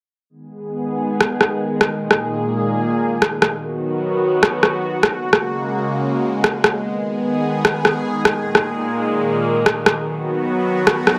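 A lush, detuned supersaw pad holds sustained chords up front from 0.3 seconds, its bright sawtooth tone colored by a phaser and a low-pass filter sweep as it moves through G#m, D#sus4/A#, B and F#add9. An electronic rim click, layered and re-recorded in a small room, enters at 1.2 seconds with soft clipping on its snare and sits close in the mix, marking a half-time feel. This aggressive, menacing heavy wobble dubstep fragment has a moderate digital room reverb and a dense, heavily limited modern master.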